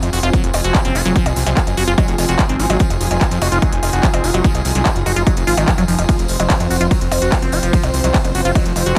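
Psychedelic trance, intense and driving, cut from a longer piece: an overdriven electronic kick drum sits up front from 0.3 s, backed by an overdriven techno drum kit of smooth hats, handclaps, ride cymbal and percussion blips, plus a distant, jingly tambourine in a large room. A fat, saturated analog bass anchors the low end with filter sweeps, while a squelchy, bright acid bass riff with phaser and tape echo enters at 0.1 s. In the background, a bubbling, detuned sawtooth texture with random filter steps and chorus sustains chords. A veiled, con sordino string section adds bowed vibrato, and the strings, the texture and the acid bass all pump to the sidechain under light reverb.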